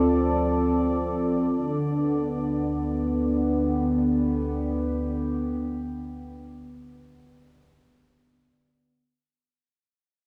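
A short, melancholic and serene ambient fragment cut from a longer piece, heard as a home cassette recording with small-room ambience and a wet studio reverb, fading out across its full 8.9 seconds. In free time, an up-front analog pad with chorus and tape warble sustains detuned, wave-folded chords from D3 to D5, moving from Dm7 to G/D at 1.6 seconds. Beneath it, a much quieter drone rumbles darkly on a low D2, its slow attack and long release carrying a built-in reverb that lends an ominous depth.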